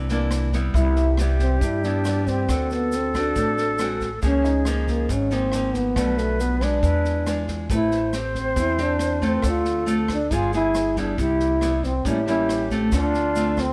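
A breathy, whispered trombone carries the melody up front in this sunny, sophisticated bossa nova excerpt, with a hollow, mellow jazz flute tracing a second line from 0.7 seconds. A fingerpicked nylon-string guitar and a woody, growly pizzicato upright bass hold down the accompaniment, while a polished drum kit with punchy kick, rim click and snare keeps time and a grainy tube shaker sits in the background. A very quiet grand piano, with its action noise audible, adds intimate touches until 9.5 seconds and briefly returns near the end, all over lush extended chords in a dry, close sound.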